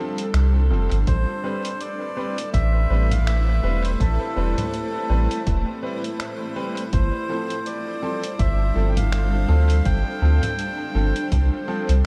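Ambient dub at 82 BPM in A minor with a swung 16th feel, this hazy, spacious excerpt from a longer piece sets a cloudy, evolving granular pad with lush chorus and a woody upright piano's echoing stabs over a round, up-front sub bass and muffled, pitched-down sampler congas, snaps and hi-hat, while a breathy, reedy melodica carries the dub-echoed melody from 1.1 seconds alongside a punchy background electronic kick, moving from G9sus4 to Am9 and back to G9sus4 at 6.9 seconds in a lightly reverberant space.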